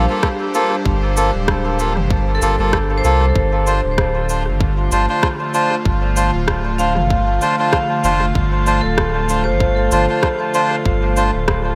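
Hazy and spacious, this ambient dub fragment moves at 96 BPM in 4/4 with a swung sixteenth feel, as an airy, breathy pad with chorus holds sustained chords from Gm9 to Dm7 while a bright vibraphone struck with hard mallets rings out arpeggios through tape echo. A reedy, nasal melodica stabs up front with dub echo over a deep, round sub bass, a tight, tape-warm electronic kick, and a large-room electronic kit of cabasa, rim click and toms that also carries dub echo. From 4.6 seconds a glassy texture of drifting overtones settles in the background under light reverb.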